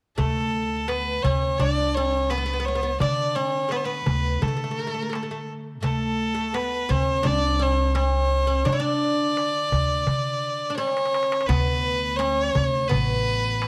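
A clear, nasal violin leads from the front with light vibrato and an airy bow, carrying a stately, passionate melody over an Arabic maqam ensemble at 85 BPM in a straight 4/4. Beneath it, a woody, plectrum-plucked fretless oud with doubled strings plays a deep second line, while a thumpy pizzicato upright bass and a crisp, metal-shelled darbuka struck with hard hands, heard close and dry, hold the ground. The room is an echo chamber with moderate reverb, and a drum fill at 10.8 seconds leads into a new section at 11.5 seconds of this passage cut from a longer piece.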